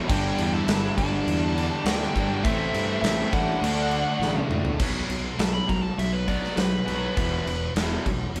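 A big, punchy rock drum kit sits up front in this driving, aggressive hard rock excerpt at 102 BPM, its bright cymbals and medium-tuned snare filling a large room, with a drum fill at 4.2 seconds leading into a lead guitar solo at 4.8 seconds. Underneath, a growly fuzz fingered bass and a stack of riffing guitars (a tight distorted one, an overdriven semi-hollow one with spring reverb, and a very quiet double-tracked one that stops at 4.8 seconds) move from G through Am and D before shifting to B5 and E5. On top, a nasal lead guitar with a parked wah carries the melody while a dark octave-fuzz guitar adds a second line in the background, the whole band playing live in one room.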